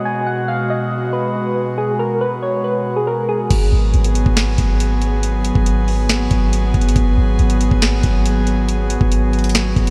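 A dreamy mix soaked in huge ambient reverb sets a brooding, dark trap mood in half-time, opening on an airy, breathy pad holding a G#m7 chord under a filter sweep. Over it, gentle, round electric-piano-like synth keys carry a mellow melody colored by chorus, phaser and delay. At 3.5 seconds the keys stop and a deep, boomy, clean 808-style bass joins an up-front electronic drum kit with a knocking kick, sharp snare, bright hi-hats and crash, carrying this slice of a longer piece to its cut at 9.9 seconds.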